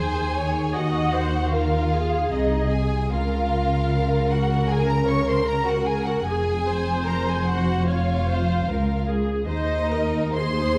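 Lyrical and tender, this slow romantic movement for string orchestra unfolds at 75 BPM in Db major, with a rubato feel that lets the phrases breathe. A close, lush first violin section carries the expressive melody high above the ensemble, while a clear, even second violin section sits further back with a smooth supporting line. Distant violas fill the middle with a rich accompaniment, and the bass is anchored by a dark, soft-attacked cello section alongside an up-front double bass section. Every section is bowed with vibrato, and the harmony moves gently from Ab7 over Eb to Db and back toward Ab by 9.5 seconds. A moderate scoring-stage reverb and a dark, warm production wrap this 10.8-second passage, cut from a longer piece, in an enveloping glow.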